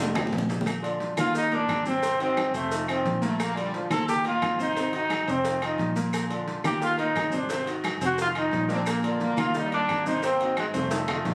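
A drum fill opens this festive, danceable salsa excerpt at 176 BPM in Bb major, where a clear concert grand piano with short sustain carries the chords under a dark, foam-muted fingered electric bass, while round low-tuned bongos and cowbell, ringing timbales and agogo bells, woody claves, grainy maracas and very quiet, thin-skinned congas fill out the percussion. At 1.2 seconds a bright, punchy solo trombone takes the melody up front with a distant, roomy sound, and a brilliant trombone section with light vibrato adds a tight second line in the background in two short passages. The whole sounds like a phone capture in a studio, with moderate reverb and compression, and another drum fill closes it out at 10.6 seconds.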